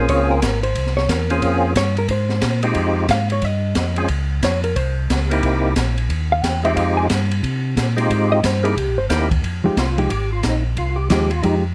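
A dark, clean hollow-body jazz guitar takes the solo spotlight from the opening until 9.4 seconds, its fingered, compressed tone sitting against a bluesy, smoky soul jazz organ trio groove with a swung feel. A percussive tonewheel organ carries the melody up front, fat and lightly overdriven, with third-harmonic percussion, audible key click, chorus vibrato and a slow rotary speaker, and it steps forward for its own solo at 9.4 seconds. Underneath, a second tonewheel organ plays the bass line with a mellow, round, dark and clean sound, also treated with chorus vibrato and slow rotary. An acoustic drum kit in a studio room fills out the trio with dark ride and hi-hat cymbals, a high-tuned snare and a boomy kick. The harmony moves through rich minor-ninth, major-seventh and altered dominant chords such as Bbm9, Dbmaj7 and C7#9 under light reverb, in a short cut taken from a longer performance.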